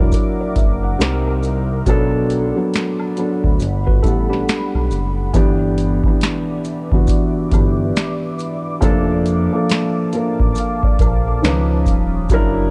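A booming analog drum machine sits up front with a deep kick, crisp snare and metallic hats roughened by vintage 12-bit sampler grit, anchoring this cosy, dreamy lo-fi hip hop excerpt at 69 BPM in G major with a swung 16th feel. A felt-muted upright piano, soft and intimate through cassette tape and a low-pass filter, carries the chords from F#aug7 through Gmaj9 and G6 to a closing C#9, over a smooth, nasal synth bass and a deep, moody ambient pad shimmering with chorus, tremolo and built-in reverb. Maracas and woodblock tick quietly in the background, while a worn, slightly out-of-tune tine electric piano, lightly overdriven with analog delay, adds a brief second line from 3.9 to 5.3 seconds within a dark, warm production.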